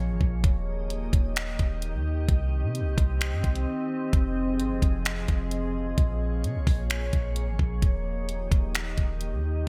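A half-time 130 BPM groove in 4/4 carries this melancholic, ethereal cloud-rap hip hop excerpt: an up-front electronic R&B kit of knocking kick, hi-hat and finger snaps drops out from 3.7 to 4.1 seconds, a deep, boomy 808-style sine bass anchors the low end, and a glassy FM pad with ensemble chorus, built-in reverb and sidechain pumping sustains chords through Eb, Cm, Fm7, Bbm7 and back to Eb, in a bright 1980s-style digital production with light reverb.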